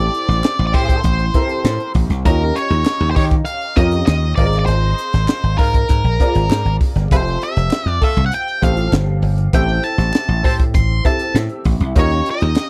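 A straight 4/4 groove at 99 BPM is driven by a crisp fusion drum kit with a high-tuned snare and punchy kick in a small, pumping room, alongside a dry, up-front thumbed slap bass with a bright, foam-muted attack, while very quiet group handclaps join at 0.4 seconds. Over this polished, breezy 1980s jazz-funk pop, a dark octave-fuzz lead guitar carries the melody with distortion and slapback echo, and a clear, slightly worn grand piano with ensemble chorus comps through Am7, Eb7, Ab69 and Fmaj7. A mellow, distant horn section with light vibrato adds a second line from 0.7 to 10.6 seconds, all in a close, nearly reverb-free mix cut from a longer piece.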